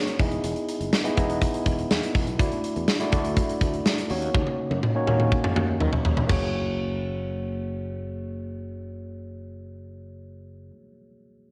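A worn, slightly out-of-tune tine electric piano opens this glossy, romantic 1980s-style pop excerpt at 123 BPM in F# mixolydian, its clean combo-amp tone sitting up front with a cassette-tape color as the chords move from Emaj7 through Dadd9 and D#m7 to F#add9. A big acoustic rock kit with punchy kick, medium-tuned snare, crash, hi-hat, tambourine and toms joins almost at once, mid-forward with a rolled-off top, playing a fill from 4.3 s and stopping at 6.4 s. Meanwhile a bright, growly fretless electric bass sustains underneath until 10.7 s, all inside a lush hall reverb and small-room ambience on a home cassette recording.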